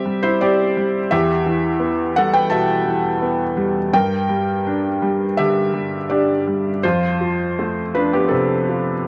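A felt-muted upright piano plays alone for the full 9.1 seconds of this short excerpt, sitting up front with a soft, mellow tone, audible action noise and the thin sound of its felt, spanning E2 to A5. The neoclassical minimalist piece is intimate and wistful, in E minor at 83 BPM in 4/4 with a rubato feel, tuned to A4 = 442 Hz, moving through Csus2, Em, Gm and F. Moderate studio ambience and a worn, cassette-tape character with warbly pitch drift give the sound an aged quality.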